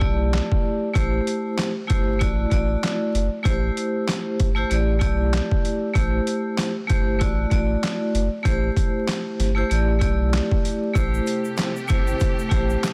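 Moody and gritty, this boom-bap hip-hop excerpt in A dorian moves at 96 BPM with a swung feel, opening on a break as a vibraphone struck with medium hard mallets rings out bright and airy over a deep, round sub bass, cycling through Am7, Dadd9/A and Em7/A voicings. The sampler-style drum kit sits up front, pitched down and overdriven with a thumpy kick, medium-tuned snare, hi-hat and handclaps, while the vibraphone carries a cassette tape color and a slow motor vibrato. At 11.0 seconds a lush, bowed studio string section enters with sustained chords alongside a grainy egg shaker tucked in the background, all within a dense, heavily limited mix with studio reverb and vinyl crackle.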